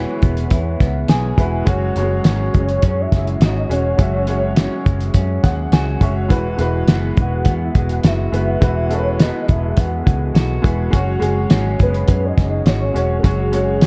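The production is dark and warm, with light reverb and a small-room ambience that give this stretch of indie and bedroom pop a nostalgic, sunny glow. At 104 BPM in a straight 4/4, a cloth-damped, thuddy drum kit sits up front from 0.2 seconds. Its fat snare, tight kick and hi-hat sound saturated, gritty and muffled. Beside it, a vintage muted picked bass is round, punchy and amped. A bright, woody upright piano, slightly detuned, carries the accompaniment and adds fills at 0.8 and 5.1 seconds. An electric guitar through a small old amp gives a slightly broken-up, compressed lo-fi layer with subtle chorus and a warbly pitch drift. Over them a soft octave-layered synth lead sings the melody, its full, sustained tone blending triangle, sawtooth and sine with a sub octave, shaded by tremolo, vibrato, ensemble chorus and analog delay, while the harmony moves between Eadd9 and F#sus2 in this passage cut from a longer piece.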